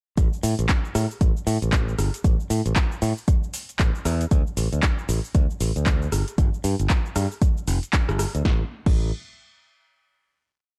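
A dark, dry mix opens this short, smooth and hypnotic deep house piece at 116 BPM, with its 16ths swung. An overdriven, deep electronic kick pounds four-on-the-floor up front, while a layered, programmed kit adds a punchy snare and clap on the backbeat, metallic closed and open hats, rim, shaker and crash, all carrying the gritty air of a large room. A bright, growly fingered electric bass with tube saturation and sidechain pumping plays a funky syncopated line from F1 to A2, holding on to 9.1 s after the drums stop at 8.9 s as the final chord rings out to 10.5 s.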